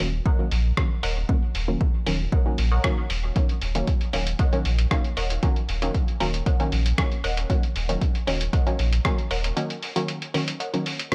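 Filtered dub chord stabs on Ebm7, chorused, phased and trailing dub echo, pump over a round sine sub bass and a muffled, tape-softened sampler-style kit of hi-hat and rim click, joined at 0.3 seconds by a higher detuned sawtooth stab riff and a punchy, up-front electronic kick in this hypnotic, hazy dub techno excerpt at 116 BPM in Eb minor, where the bass drops out at 9.5 seconds and the kick at 9.2 seconds for a closing break, all on a dry, gritty cassette recording.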